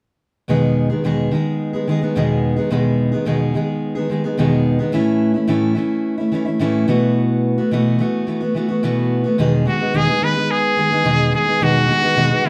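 Pop in E major at 108 BPM, this carefree, easy-going excerpt is cut from a longer piece and moves with a straight pulse. A fingerpicked steel-string acoustic guitar carries the accompaniment from the start, its warm, full-bodied jumbo tone sitting up front as it moves through Emaj7, A and B7sus4. At 9.7 seconds a brilliant solo trumpet enters with the melody, punchy, forceful and present, with vibrato and scooped notes in a pop style. Both parts play to the end at 12.5 seconds. The band sounds as though it is playing live in one small room, with a wet reverb surrounding the guitar and trumpet.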